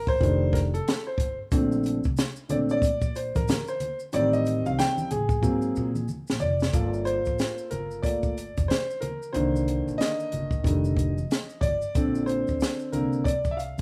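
Mellow and nocturnal, this swung jazz-hop cut from a longer piece features a boxy, long-sustaining grand piano soloing up front over chords such as Bbmaj9 and Gm9, a woody pizzicato upright bass, and a dry compact cocktail kit with a punchy kick and high-tuned snare that plays a fill at 5.4 seconds, while soft-handed maracas and congas join at 1.5 seconds, all in a rough, small-room home-demo sound.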